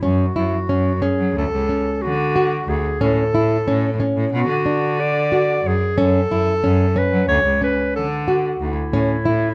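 A breathy clarinet, a nylon-string guitar and a bowed cello begin together in this urgent, pensive piece of contemporary chamber music, moving in 9/8 at 182 BPM counted in eighths with a straight feel. The clarinet carries the melody up front in a jazz style, with light vibrato and a smooth top. The dark, thumb-plucked classical guitar plays arpeggios with audible finger squeak, while a single cellist supplies a rich, focused bass line with vibrato, over chords that pass through Dmaj7, A, a rootless Bm and F#m7, all captured closely and in detail with little reverb in this short passage cut from a longer work.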